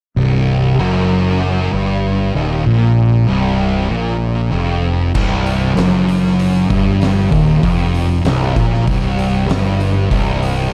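Stoner and doom metal at 97 BPM in a straight 4/4, this excerpt from a longer piece carries an ominous, heavy mood and a slightly flat tuning of A4 = 435 Hz. A thick, double-tracked fuzz guitar sits up front from 0.2 seconds, picking a low riff built around a C5 power chord, its distortion giving the tone a warm, fuzzy edge. Beneath it, a growling fingered electric bass holds down the low register, its overdriven signal blending direct and amped character into a throaty rumble. At 5.1 seconds an oversized, low-tuned acoustic drum kit crashes in, with a punchy kick, a fat snare and dark cymbals ringing in a bright stone room that adds a gritty, smooth weight to the hits. The production is dark overall, with light reverb holding the mass of fuzz and low end together.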